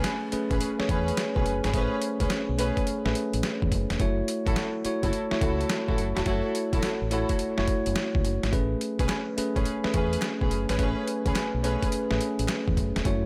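Slick and punchy, this short cut from a longer new jack swing R&B piece moves at 106 BPM in 4/4 with a sixteenth-note swing, resting on a single Amaj9 chord throughout. A bell-like tine electric piano sits up front with a bright, clean tone, comping between A3 and C#5, while a muted string section adds veiled, con sordino stabs with soft attacks, vibrato and a lush ensemble body, trailed by tape echo until 11.8 seconds. The sampler-style drum kit is compressed, pitched down and gritty, its thumpy kick, medium-tuned snare and hi-hat pushed through overdrive and placed prominently in the mix. A deep, round fingered electric bass enters at 0.3 seconds, dark and direct as it moves between E1 and E2. Crisp, very quiet group handclaps join at 9.1 seconds, and a light reverb rounds out the mix.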